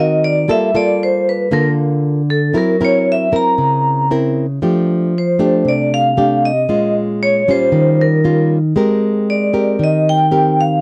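A straight 4/4 bossa nova groove at 116 BPM carries this sunny, romantic fragment in F major, cut from a longer piece. Fingerpicked nylon-string guitar plays the accompaniment throughout, its acoustic, classical tone sitting up front. The vibraphone, struck with medium hard mallets, carries the melody with a metallic, ringing voice and a fast motor vibrato, and takes a solo over the opening section until 4.6 seconds. The harmony moves through Gm9 and Gb7#11 before landing on F69 as the second section begins at 4.6 seconds, then passes through Bbm7 and Eb9 to arrive at Abmaj9. The sound is a dry, close 1970s-style studio recording with light reverb.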